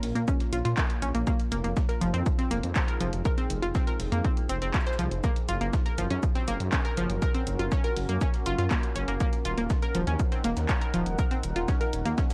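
A dry, gritty recording with transformer saturation and cassette-tape grit opens this dark, dramatic slice of melodic techno, cut from a longer piece and moving at 121 BPM in a straight 4/4. A punchy, layered electronic kick sits up front from 0.3 seconds, joined by an analog drum machine's handclaps and hi-hats that were re-recorded in a large room, their hats pumping with sidechain, while a very quiet, compressed breakbeat-style sampler kit adds pitched-up hi-hat, shaker and a medium-tuned snare. Underneath, a menacing detuned saw bass with a filter swell and fast attack holds the low end, saturated and pumping, as the chords move from Bbm through Fm7 and Gb to Ebm. A round, bright analog pluck spins arpeggios from F3 to C5 with chorus, analog delay, a noise layer and a filter sweep, its short decay adding bite over the groove. In the background, a deep, moody pad of unison saws and a sub octave breathes in slowly with chorus, built-in reverb and a long release, pumping with sidechain.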